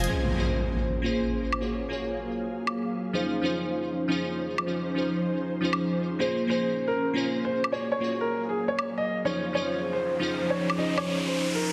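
Playful and lush, this future bass passage moves at 157 BPM in 4/4 with a half-time feel and a light swing on the sixteenths, set in Db major. Electronic hi-hat and woodblock tick along from the start, while glassy digital keys carry the accompaniment up front, their detuned, decaying tones thickened by chorus and a digital delay. Behind them an ethereal, airy pad holds sustained chords from 1.0 seconds, its slow-attack sawtooth and triangle layers softened by ensemble chorus and built-in reverb. An electronic impact opens the passage, and a riser builds through the final seconds from 9.8 seconds. At 6.2 seconds a polished grand piano takes the melody, sitting present and close with a dub echo trailing its notes. The harmony cycles through Bbm9, Gbmaj9 and Dbmaj9/F, all wrapped in a lush hall reverb and a heavily compressed, radio-like finish, and the passage is cut from a longer piece.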